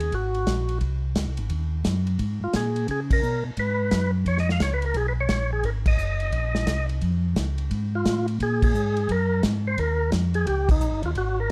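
Soul jazz organ trio at a fast swinging 174 BPM in 4/4, bluesy and soulful, where a percussive tonewheel organ with key click and slow rotary speaker carries the melody over a round, mellow tonewheel organ bass line with chorus vibrato and an acoustic soul drum kit with dark cymbals and a punchy kick, moving through chords such as Ab9, Db7, Faug and Eb9, with band accents landing at 3.1, 5.8 and 8.6 seconds in a dark production with light reverb.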